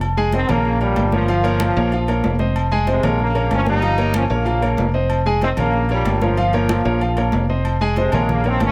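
A straight 4/4 salsa groove at 188 BPM in F minor drives this fiery, passionate excerpt, with a dark, round fingered electric bass up front, ringing agogo bells and timbales, and soft-handed, high-tuned congas in the background, joined by a clear, intimate grand piano with audible action noise entering at 0.2 s and a bright, tight trombone section with light vibrato, slapback echo and plate reverb carrying the melody from 0.3 s over cycling Fm7, Bbm and Gm7b5 chords in a moderate studio ambience.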